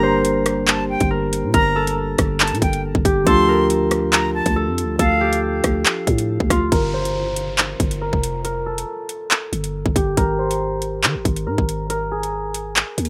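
A menacing, dark drill hip hop cut at 139 BPM with a half-time feel, moving through Gm, Dm, Fadd9 and Ab. A bright, ringing concert harp carries the melody up front with a thumb-plucked, acoustic tone, treated with delay and a low-pass filter that sweeps across it from 6.7 seconds to the end. Over it, an airy silver flute with vibrato and a soft attack plays a second line through delay until 5.4 seconds, while a mellow, clean tine electric piano supplies accompaniment until 6.7 seconds. Underneath, a growling, buzzy 808-style bass with a fast attack and decaying tail anchors the low end. The electronic drill kit sits up front with a hard-clipped kick, metallic hats, handclaps and rim clicks, and an electronic downlifter drops in at 6.7 seconds. The mix is dry and rough, like a home demo.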